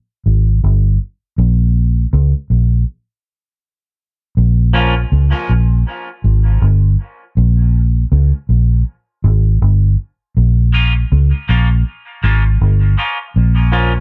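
Hypnotic and heavy, this dub reggae excerpt moves at 80 BPM in 4/4 with a swung sixteenth-note feel, centred on B-flat dorian. A vintage muted fingered electric bass opens it alone at 0.3 seconds, its dark, round, foam-muted tone punchy and up front as it holds a low register. The bass carries the opening break before the harmony settles on B-flat minor at 4.4 seconds. A clean electric guitar adds a brief bright, twangy touch at 4.7 seconds, then returns from 10.7 seconds as picked accompaniment, thinned by a high-pass filter and trailed by dub echo. The guitar sits well beneath the bass in level, and a digital ambience wraps the mix in a dark, warm production.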